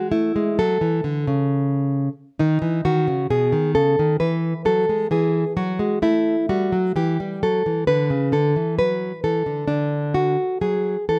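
A solo nylon-string guitar, fingerpicked and up front with fresh strings, opens this radiant, serene baroque-style classical dance in A major at a rubato 66 BPM in 4/4. The harmony moves from A through a rootless B chord and E to an A5 before settling on D around 7.9 seconds, all within a range from B2 to B4. A light reverb gives the warm acoustic tone a gentle space across this 11.2-second cut from a longer piece.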